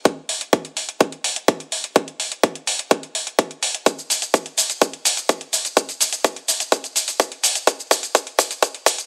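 A dry, close-sounding mix with a thin, filtered low end opens this short cut from a longer festival progressive house track, set at 126 BPM in a straight 4/4. Only drums are heard: an electronic kick drum, punchy and layered, sits up front with a high-pass filter trimming its weight, while an electronic hi-hat and shaker part adds metallic, layered hats, also placed up front. Both carry a touch of small room ambience and run from the first moment to the end at about 9 seconds. The whole passage is a build-up, and from 3.9 seconds a drum fill drives it onward. The mood is euphoric and powerful.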